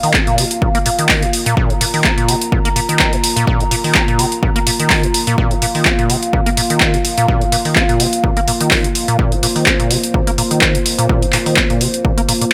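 The groove runs at 126 BPM in 4/4 with a light 16th-note swing, driven by a punchy, overdriven analog drum machine carrying handclaps and hi-hat up front, while an overdriven electronic kick thumps beneath it from 0.1 seconds. This short acid house excerpt, cut from a longer piece, feels trippy and hypnotic, with a square-wave acid bass repeating a squelchy, hollow riff between Ab2 and Db4 under a filter sweep that runs its full length. The bass has a fast attack and decaying, resonant tone, thickened with tube saturation, analog chorus, cassette tape color and delay. Behind it, a dark analog pad sustains deep, moody chords from Bb3 to Bb5, its detuned square, sawtooth and triangle layers, sub octave and ring modulation blurred by chorus, vintage 12-bit sampler grit and sidechain pumping, with a slow attack and long release. The mix sits in light reverb and digital ambience, and the single chord Bb5 is marked at the very start of the section.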